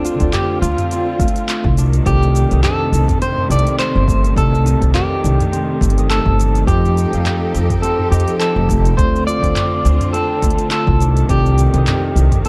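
A woody, thumpy upright bass sits up front in this wistful sunset chillout excerpt, its plucked gut strings carrying the low end beneath a gently swung groove in 4/4. A slightly broken-up electric guitar, played with the fingers, carries the melody through tremolo and tape echo. Behind it, a clean tine electric piano heard through its built-in speakers and a bright, ringing Celtic harp playing fingerpicked arpeggios with tape echo sit in the background, while a lush bowed string section holds rich, vibrato-laden chords. A punchy electronic kick, entering at 0.2 seconds, joins a deep house kit of handclaps, smooth hats, shaker and toms, both layered and re-recorded in a small room. The chords move from Dm7 through Cm69 and F9 back to Dm7, and the dark production is finished with light reverb.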